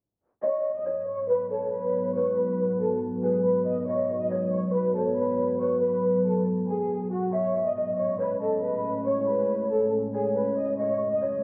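A half-time hip hop pulse at 139 BPM in 4/4 drives this dark, cold passage in G# phrygian, cut from a longer piece and moving from G#m7 through Amaj7 to F#m. A focused studio violin section with vibrato carries the melody up front, while breathy, chiffy cane pan pipes with digital delay trace a second line, both from 0.4 seconds. A deep, detuned sawtooth ambient pad with chorus and a slow attack joins at 1.4 seconds with sustained chords, and a filter sweep runs through the whole passage, set in a lush hall reverb with a low-pass filter.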